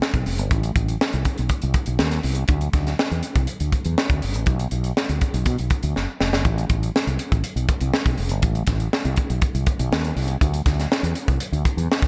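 A crisp fusion drum kit opens this short excerpt of polished 1980s jazz-funk pop, with hi-hat, kick and a high-tuned snare sitting up front in a small, pumping room treated with gated reverb. A fretless electric bass enters at 0.1 seconds, warm and amped yet direct, moving between F1 and B2 with a forward, assertive presence. The groove sits at 121 BPM in a straight 4/4 feel in A minor, giving the whole piece an urban, slick mood. A drum fill at 6.0 seconds briefly punctuates the steady pulse before the pair carries on together through 12.1 seconds. Apart from the drums' gated reverb, the mix stays dry and close, keeping the punchy kick and the bass tightly in focus.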